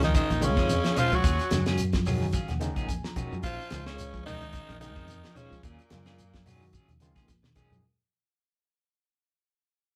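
Afrobeat with a hypnotic, defiant mood at 109 BPM, cut from a longer piece and fading out across its 7.8 seconds, as two gritty tenor saxophones, one growling and close-miked on the melody and one edgy and raspy beneath it, ride a Bbm11 to Ebm11 vamp until 6.7 s. A barky, overdriven tine electric piano with medium tremolo comps and plays a fill from 1.8 to 3.4 s, while two slightly broken-up electric guitars join in: a dark one in the background picking arpeggios and a bright, twangy one adding tremolo stabs. A round fingered bass, a dry damped 70s kit with a fat snare and a drum fill at 7.0 s, low-tuned saturated congas and a grainy shekere complete the live band in a moderate room.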